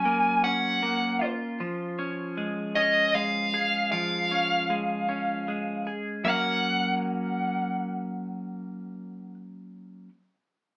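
A small, roomy sound with a wet studio reverb frames this short rock passage, captured as a band playing live together and heard through a modest speaker. It moves in a lilting 6/8 with a straight feel, and the mood is soaring and euphoric. A bright twelve-string electric guitar, clean, compressed and twangy, sits up front with picked arpeggios over an F#maj7 that shifts to C#/E#. Alongside it, a dark, smooth lead guitar with overdrive carries the picked melody in a high register. At 6.3 seconds the harmony settles onto F# as the passage turns to a brief new section. The lead guitar drops out at 9.3 seconds, leaving the twelve-string ringing on alone until 10.1 seconds, where this fragment of a longer piece is cut off.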